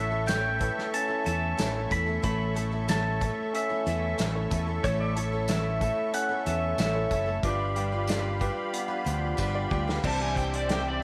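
Lightly reverberant studio sound frames this nostalgic, open-road folk and heartland rock excerpt at 92 BPM in 4/4, where a bright, twangy pedal steel with volume swells carries the melody over a round, punchy fingered bass, a shimmering octave-doubled twelve-string, a reedy musette accordion holding chords, a slightly broken-up lo-fi electric guitar riff, a dark, mellow grand piano with audible action noise, an acoustic drum kit played with bundle sticks, and a jingly tambourine, moving from A to G7 before a drum fill at 9.4 seconds leads to Cadd9 at 10.0 seconds, just after which an overdriven slide guitar adds a second line.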